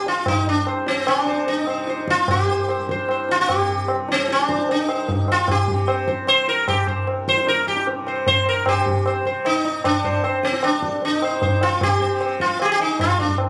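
Hindustani classical music in raga darbari, centred on C, unfolds in this meditative, introspective passage cut from a longer piece, moving in 4/4 at 151 BPM and speeding up across its 13.5 seconds. The sitar carries the melody up front between C4 and C5, its plectrum-plucked tone round and buzzing, with sympathetic strings adding a shimmering halo. Beneath it, the tanpura holds a softly plucked drone from C2 to C3, sitting in the background with its own buzzing glow. The tabla enters at 0.1 seconds, low-tuned and ringing, captured close. The sound has the feel of a phone recording made in the room, with light club reverb and compression giving the performance an intimate, slightly enclosed character.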